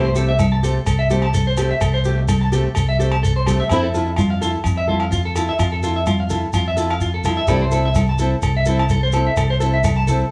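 A lightly swung 127 BPM groove in 4/4 drives this carefree highlife guitar band in C major, where an up-front, round fingered electric bass anchors a clean, picked electric guitar spinning arpeggios and a boxy, fingerpicked parlour-style steel-string acoustic with audible finger squeak, while grainy shekere, soft-handed congas with a bright, thin-skinned tone and ringing agogo bells in the background join just after the start, all heard as a band playing live in one room with moderate large studio reverb over a C5 to Fmaj7 to C6 progression in a 10-second cut from a longer piece.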